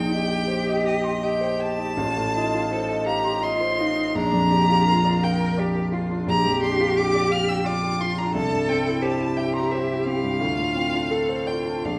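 A clear violin sings the melody up front with vibrato and a smooth, even tone in this serene, tender slow romantic movement for piano trio, cut from a longer piece and moving at 85 BPM in a rubato 3/4 in Bb major. A single bowed cello adds a rich, focused second line with a smooth top, and a warm concert grand piano, also up front, accompanies with deep bass and long sustain, the trio heard from further back in a wet stone room.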